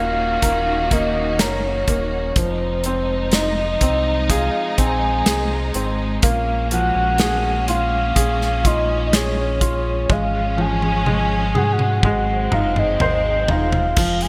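A soft, round synth lead layered in octaves carries the tender melody, its dark, full tone shimmering with chorus and tremolo over this emotional pop ballad excerpt, supported by a clear baby grand piano, smooth bowed studio strings holding sustained chords, and a deep sine-toned sub bass. A punchy acoustic drum kit with gated reverb sits up front from 0.4 seconds and plays a fill from 10.1 seconds, and a jingly tambourine touches in quietly at 14.0 seconds. The bright 1980s-style digital production sits in a lush hall reverb as the chords move from Ebm7 through Fm7 and Bbm7 to Db/Ab and Ab7.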